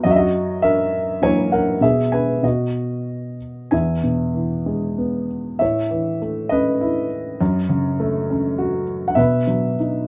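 Classical lyrical solo piano in E major, warm and sunny in mood, unfolding in a rubato 3/4 at around 91-104 BPM, where a dark, mellow baby grand sits up front with a boxy tone, short sustain and audible action noise inside moderate studio reverb, moving into a new section at 3.7 seconds in this brief passage cut from a longer piece.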